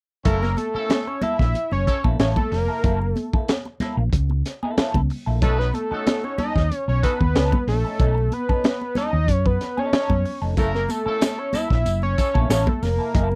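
A fat, detuned analog synth lead with chorus carries the melody up front in this playful, energetic funk excerpt at 93 BPM, riding a gritty, saturated breakbeat kit with a punchy kick and high-tuned snare, a round hollow-body fingered bass, a dark semi-hollow guitar through wah, a tight vintage horn section with slapback echo, soft background congas and a jingly tambourine arriving at 10.6 seconds, all over F#7#9 and B9 chords in a dry, close 1970s-style studio sound.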